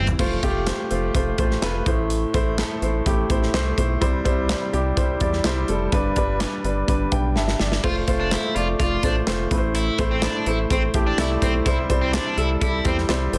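A straight 4/4 pulse from a punchy modern studio drum kit, with bright cymbals, handclaps, toms and a softly clipped snare, drives this uplifting, anthemic piano-driven pop excerpt, where a clear, woody upright piano carries the accompaniment with fills around 6.9 and 10.7 seconds over a round, deep analog bass, an overdriven, picked electric guitar riff joins at 7.8 seconds, and a large studio reverb surrounds a dense, heavily limited master.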